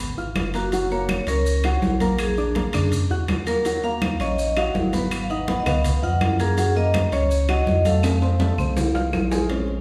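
Fiery yet sultry, this short cut from a longer Afro-Cuban jazz piece moves in a straight 4/4 feel. A bright, airy vibraphone played with medium hard mallets carries the melody, its metallic, ringing tone shimmering with a slow motor vibrato. Underneath, a dark, mellow baby grand piano comps through rich changes, while a deep, round sub bass sits up front with a fast attack and sustained notes. The percussion section packs in thick-skinned congas struck with hard hands, ringing metal-shell timbales, woody claves tucked in the background and grainy, distant maracas. A drum fill runs from 8.0 to 9.5 seconds as the harmony lands on F. A wet recital hall reverb gives the whole ensemble the spacious resonance of a church or concert hall.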